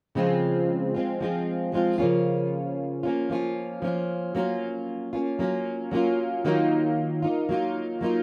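A rough home-demo mix, bathed in a moderate plate reverb, frames this short carefree pop fragment cut from a longer piece. A lone plugged-in steel-string acoustic guitar, fingerpicked and double-tracked, carries the accompaniment from 0.2 to 8.2 seconds, sitting up front with a dark, woody tone from old strings and the body of an auditorium-sized instrument. The straight, even-metered feel keeps the mood sunny and easygoing as the guitar moves through Dbmaj7, Bbm/Db, Gbmaj7 and Ebmadd9, with the change to Gbmaj7 arriving at 4.4 seconds. Its range stays in a comfortable middle register, and the doubled parts give the picking a fuller, slightly blurred body. The result feels intimate and homespun, like a songwriter's sketch of a bright opening section.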